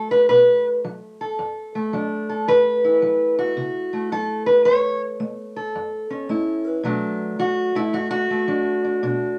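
Smoky and mournful, this short excerpt from a longer piece is acoustic country blues in F# minor, moving at 110 BPM in 4/4 with a swung eighth-note feel. A single fingerpicked steel-string acoustic guitar carries everything from 0.0 to 9.4 seconds, ranging from F#2 up to C#5. Its tone is dark and boxy with a parlour character, and it sits up front in the mix. The harmony moves from Bm7 to F#m7 at 2.5 seconds and back to Bm7 at 6.8 seconds. A moderate studio reverb gives the guitar a modest sense of room, and the instrument is tuned slightly below standard pitch, at A4 = 435 Hz.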